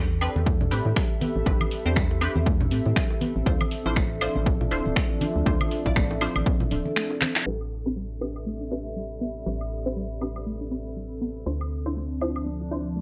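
An overdriven, punchy analog kick sits up front in this hypnotic, deep house excerpt at 120 BPM in A minor, with a 16th-note swing, and it drops out at 6.6 seconds. Around it, a layered, tape-warm kit of finger snaps, handclaps, metallic hi-hats and woodblock runs through low-pass filters and studio reverb, while close acoustic congas and bongos stay in the background through the first stretch. A hollow, organ-like FM bass with a fast, decaying attack anchors the harmony as it moves between Am11 and Dm9. Muted, resonant dub chord stabs with phaser and tape echo, a soft, round background pluck playing arpeggios, a moody, full-bodied analog pad with sampler grit, and a warbling, nostalgic lo-fi pad with ring modulation all breathe with sidechain pumping. A drum fill at 7.2 seconds and a band accent lead into the second section, where a filter sweep runs from 7.5 seconds over a light digital ambience.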